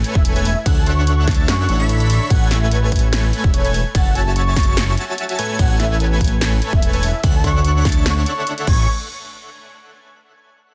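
Future bass drop with a playful, euphoric half-time feel, where a punchy electronic kick and a fat, saturated analog bass sit beneath a huge, compressed supersaw riff, with the bass pushed up front, while a breathy flute-like synth lead carries the melody through cassette-tape coloring and tape echo, an airy, dreamy lead traces phased arpeggios in the background, and a layered dance kit of snare, hi-hat and crash completes the sidechain-pumped mix until the chords drop away at 8.9 seconds.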